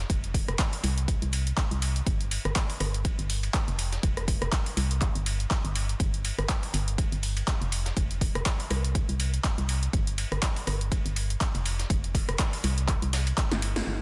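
Energetic yet bittersweet, this piano house excerpt moves at 122 BPM in 4/4 with a light 16th-note swing, anchored by a hollow, organ-like FM bass that sits dark and up front with sidechain pumping. A punchy, layered electronic kick re-recorded in a large room drives the groove alongside a tape-warm analog drum machine of handclaps, hi-hat, rim click and punchy snare in a short room, while a gritty, compressed sampler-style soul kit adds filtered hi-hat, ride and a medium-tuned snare. Under light reverb and a dense, heavily limited master, a drum fill arrives at 13.5 seconds and the band hits an accent at 13.7 seconds.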